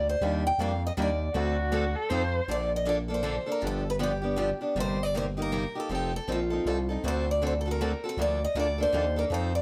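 Acoustic string swing in a jazz manouche vein, this charming, playful piece moves at 158 BPM in 3/4 with a swung feel in Bb major, cut from a longer piece. A bright, boxy picked steel-string guitar with a parlour character carries the melody while a second, up-front picked guitar supplies accompaniment over a growling, thick FM bass with a fast attack and sustained tone. A rich, expressive bowed violin with vibrato and portamento adds a brief second line from 1.3 to 2.5 seconds, all set in light reverb, as the chords move from Ebmaj7 through D7, G7 and F7 to Bbmaj7/D.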